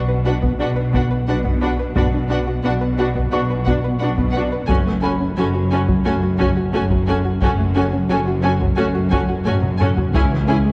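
A dark, roomy scoring-stage sound frames this brooding, tense hybrid orchestral and electronic film cue in B dorian at 88 BPM, where dark bowed double basses and background cellos anchor the low end, a rich, distant viola section and a lush violin section with soft-attack vibrato carry the upper lines, a twangy, full-bodied resonator pluck with chorus and delay spins arpeggios, a mellow felt-muted upright piano adds a high, delayed texture, a huge impact barely registers at the start, and close, dry taiko drums with heavy sticks drive the pulse to a fill at 9.5 seconds as the chords move from Bm through F#madd9 to C#m.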